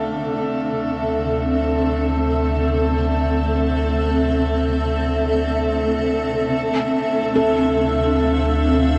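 This serene, melancholic ambient passage, cut from a longer piece in free time, opens with a granular cloud pad sustaining chords up front, its cloudy, detuned texture slowly evolving with a moving notch, while a reedy, breathing pedal harmonium holds a drone beneath it. At 0.9 seconds a deep, rumbling bass drone enters on D2, its nasal, ring-modulated tone giving an ominous undercurrent within its own built-in reverb. The harmony rests on Am/D before settling onto Dm7 at 6.5 seconds. At 7.4 seconds a felt-muted upright piano appears in the background with soft, intimate arpeggios on A4, its action noise audible and its notes trailing into a diffuse ambient delay. A long shimmer reverb and a dark, warm production wrap the whole in a blurred, airy haze.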